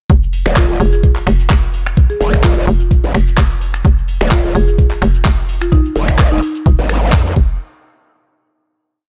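A dark, low-reverb production with a dull top end carries this swaggering, gritty bass house piece at 128 BPM in F minor, with a light swing on the sixteenths. A knocking, tape-warm four-on-the-floor kick sits up front beside a garage kit of metallic hats, shaker, claps and snaps. A hollow, bouncy FM bass with tube saturation chops out phrases, and a growling, wobbling bass with chorus enters at 0.5 s to answer it, both pumping from sidechain. A buzzing, woody marimba with delay adds short answering phrases until 6.7 s, and the drop gives way to a final hit at 7.6 s.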